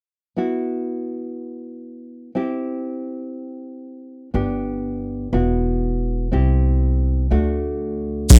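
Calypso excerpt at 121 BPM, bouncy and festive, where a very quiet, dark nylon-string guitar with finger squeak carries the Esus2, C, G and D changes from 0.4 seconds, a woody, thumpy pizzicato upright bass joins at 4.3 seconds, and at 8.3 seconds an up-front, overdriven analog drum machine with a deep kick and metallic hats briefly lands alongside a grainy tube shaker in a dry, close 1970s-style studio sound.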